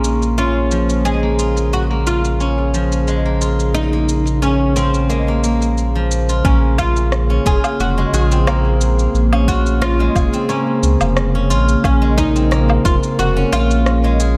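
From the opening moment, a woody, fretless oud with doubled strings carries the melody over a warbling, nostalgic pad of sustained chords and the silvery, ringing arpeggios of a fingerpicked steel-string zither. This is meditative organic downtempo in Bb minor at 89 BPM, with a light swing on the 16ths and a Bbm7 chord underneath. A round sine sub bass sits up front and pumps from sidechaining, as does the lo-fi pad, while an electronic shaker, woodblock and rim click keep the pulse in a touch of studio ambience. At 6.4 seconds a deep electronic kick drum joins, dropping out at 13.0 seconds. Delay trails the oud and the low-pass-filtered zither, the pad carries chorus and its own reverb, and the mix has a dark, warm production with light reverb, heard here as a cut from a longer piece.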